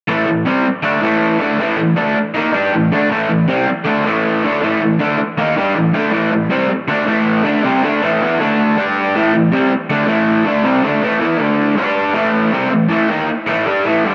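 Raw and swaggering, this rock excerpt is cut from a longer piece and moves at 159 BPM in a straight 4/4. A lone electric guitar carries it from 0.1 to 14.1 seconds, bright and overdriven, picked and double-tracked, and sitting up front in the sound. It runs through tape echo and a cassette-tape grit, spanning G2 to G4. The harmony rests on A5 for a long stretch before moving through D5 and G5 back to A5 around 9.1 seconds, a turn that returns once more before a new section arrives at 12.2 seconds. A light reverb and the unpolished character of a home cassette recording give the whole piece a garage-born, lo-fi edge.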